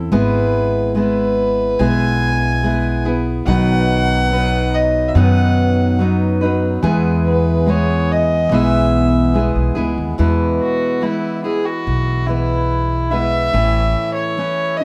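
A bowed fiddle with a gut-string tone carries the solo line through this peaceful, pastoral acoustic folk excerpt, over a picked steel-string guitar and a woody pizzicato upright bass, while a breathing, reedy pedal harmonium holds mellow chords in the background from 3.5 to 10.2 seconds, in a lightly reverberant space.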